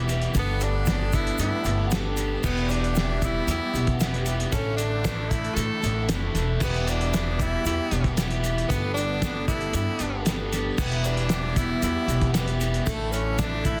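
A picked twelve-string acoustic guitar, a lush bowed string section, an overdriven garage guitar riff and a woody upright bass open this wistful, reflective folk rock and heartland rock excerpt in E minor, moving at a straight 115 BPM in 4/4. A cloth-damped, thuddy drum kit enters at 0.1 seconds with a fat snare, dark cymbals and a tight, saturated kick, joined by a grainy egg shaker tucked into the background. At 0.4 seconds an edgy tenor saxophone takes the lead, punchy and forceful with a light vibrato, carrying a pop-style solo melody over a cycle of Gadd9, Em and Asus4. The twelve-string shimmers with octave-doubled brightness and audible finger squeak, while the double-tracked garage guitar adds a phaser sweep to its raw bite. The pizzicato gut-string bass sits thumpy and up front, and the very quiet strings hold smooth, even chords underneath, all inside a small room with light reverb and a dense, heavily limited modern master.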